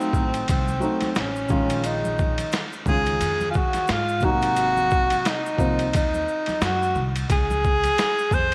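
Smooth and cool, this excerpt of jazz-hop sits at 88 BPM in 4/4 with a swung sixteenth-note feel. A breathy tenor saxophone carries the melody up front, its mellow subtone coloured by vibrato and scooped notes and trailed by an analog delay. Beneath it, a dark concert grand piano adds mellow, vintage-toned accompaniment through a lush chorus until 5.9 s. A woody pizzicato upright bass on gut strings and a gritty, pitched-down boom bap drum kit with a thumpy kick, medium-tuned snare, hi-hat and ride give the groove its weight. Soft-handed maracas and congas sit in the background. The chords move from a rootless F7b9 through Bbm7 and Ab9 to a Db resolution, all set in a dreamy mix soaked in hall reverb with a layer of vinyl crackle.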